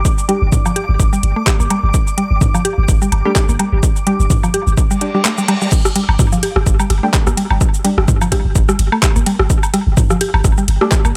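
Sparse and cool, this minimal techno cut, taken from a longer piece, moves with a gentle 16th-note swing and an echo-heavy mix. A punchy, up-front kick with a tape-warm edge anchors the groove beside a deep sine sub bass whose pitch-drop attack gives each note weight, while sidechain pumping makes it breathe. A layered garage kit adds claps, shaker, ride, crash and metallic hats, and a second kit scatters rim clicks, toms and woodblock through dub echo. A woody, round FM pluck carries the riff with chorus and its own dub echo, and muted, detuned sawtooth chord stabs flicker through lush chorus and analog delay. A blurred, granular cloud pad drifts high above the opening until an electronic reverse cymbal rises from 5.0 seconds into the drop at 5.7 seconds, where the pad falls away and the drums, bass, pluck and chord stabs carry on.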